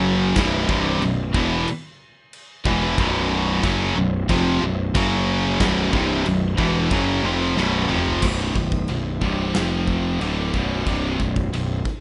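A straight 4/4 heavy metal groove at 91 BPM opens in half time, with the big acoustic drum kit (punchy kick, medium-tuned snare, crash and toms in a bright stone room) entering at 0.4 seconds and a drum fill at 7.6 seconds leading into the next section at 8.2 seconds, where the up-front tight distorted guitar drops out. Three distorted guitars play riffs, one tight and up front, one double-tracked and high-gain in the background, and one very quiet, while a growly, fuzz-overdriven picked bass sits up front beneath them, moving through B5, F#5, F5 and Bm chords. The epic, heavy mood comes through a rough home-demo mix with little reverb and nothing above 11 kHz, cut from a longer piece.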